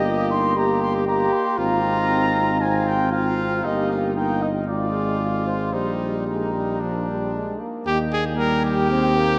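The recording sits in a vast, echoing space, its cathedral reverb leaving a long, wet halo around this brief classical excerpt for brass quintet. The mood is warm and stately, moving at 116 BPM in a straight 4/4 in Eb major. A mellow cornet carries the melody from Bb4 up to C6, sounding distant and roomy with a light vibrato, while a bright trumpet sits up front on a second line between D4 and Bb4, also touched with light vibrato. A brilliant trombone and a clear French horn, the horn set further back, fill out the accompaniment in the middle register. Underneath, an up-front tuba supplies a mellow bass with a smooth top and light vibrato, reaching down to G1. The harmony starts on Gm and passes through Fm/Ab, Eb/G and Eb/Bb to Bb before settling on Eb at 7.9 seconds, where a new section begins and runs to the cut at 9.4 seconds.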